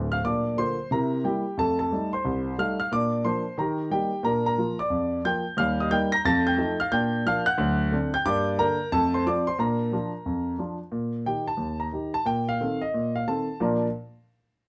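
Stride piano jazz with a playful, swinging mood, this short passage is cut from a longer piece and moves in a brisk 4/4 with swung eighth notes. A lone grand piano carries the whole performance from 0.0 to 13.9 seconds, ranging from deep bass notes up into the bright top of the keyboard. Its tone is warm and present, placed up front, with a long sustain that lets each chord ring. The harmony circles through a lively progression of dominant and ninth chords before settling over a Bb bass note around 10.9 seconds and returning home near the close. A moderate studio reverb adds a modest sense of room around the instrument.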